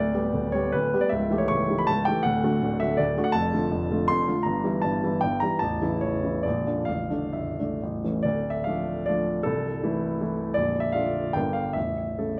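A polished grand piano carries this brief classical piece alone, its tone warm and present, placed up front by close, detailed microphones. It is a romantic dance in 3/4 with dotted rhythms, played with free rubato so the pulse drifts between 120 and 174 BPM, giving it a capricious, wistful character. The harmony opens in D major over G/D, A7/C# and D chords, then shifts to D minor at 3.3 s, passing through a diminished chord and a Bb before settling on A. A new section begins at 8.2 s on D minor and moves through Am/C, Bb and Gm before closing on A, as the piece is cut from a longer work at 12.4 s. The piano spans from A0 up to C#6, and a moderate recital-hall reverb lends the sound a gentle sense of space.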